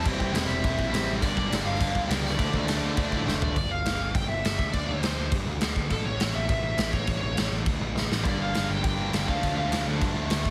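A saturated, up-front garage drum kit with a punchy kick and fills at 3.3 and 8.0 seconds drives this aggressive, urgent punk rock excerpt, where a high-gain lead guitar carries the melody until 9.8 seconds over a warm fuzz bass, while a bright, tight distorted guitar and a hollow-bodied overdriven guitar in the background play the riff, drop out at 3.5 seconds and return at 8.2 seconds, all within a dry, heavily compressed radio sound.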